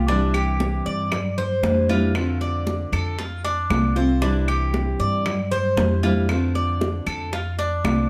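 A straight 4/4 pulse at 116 BPM drives this danceable, warm Cuban son and guajira passage in C major, cut from a longer piece and running about 8 seconds. Up front, a dark, thumpy upright bass plucks gut strings low in its range, while a picked Cuban tres spins arpeggios with a metallic edge from its double, partly octave-doubled strings. A bright, fingerpicked nylon-string guitar fills in the accompaniment beneath, all three starting together at the top. Tight, high-tuned bongos and ringing, band-limited congas with a vintage tone arrive at 0.1 seconds, the congas sitting in the background, and woody, distant claves join at 0.3 seconds. The harmony alternates between Cadd9 and F6 every couple of seconds, and a moderate studio reverb gives the ensemble a gentle sense of space.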